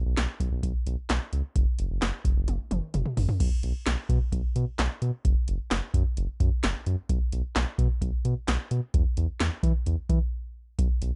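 A dry, up-front analog drum machine with a deep kick, punchy snare, metallic hats, handclaps, toms and crash drives this upbeat, nostalgic synth-pop excerpt at 130 BPM, rolling through a fill at 2.5 seconds and a brief break at 10.3 seconds over a round, dark analog bass with a sawtooth-and-sine tone and sustained notes, all in a close, dry mix.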